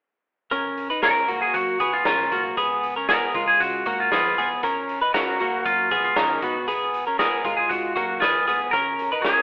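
Jangly indie pop with a bright, youthful mood, heard in a short passage cut from a longer piece. A clean, picked twelve-string electric guitar sits up front playing arpeggios from 0.5 seconds, its compressed, warm tone carrying the chords from F# through C#7 and G#m7. At 1.0 seconds a lightly driven lead guitar joins with a twangy, slightly broken-up melody, also up front and picked. Underneath, a raw garage drum kit of hi-hat, punchy kick and medium-tuned snare sounds gritty and saturated, with a rolled-off top and the air of a stone room. A vintage foam-muted fingered bass stays round and dark in the background. The whole has a rough home-demo feel, with light reverb and a telephone-like sound.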